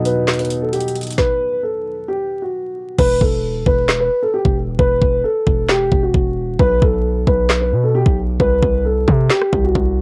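A half-time trap beat at 133 BPM in E harmonic minor opens with a dark, boxy piano melody run through tape echo and cassette grit, alongside piano chords and a faint, detuned pad over B until a stop at 1.2 s, before a knocking kick, woody snare and claps return at 3.0 s with a punchy, heavy 808 bass while the hi-hats stay muted, giving this melancholic, hard-hitting excerpt a close, crackling home-cassette sound.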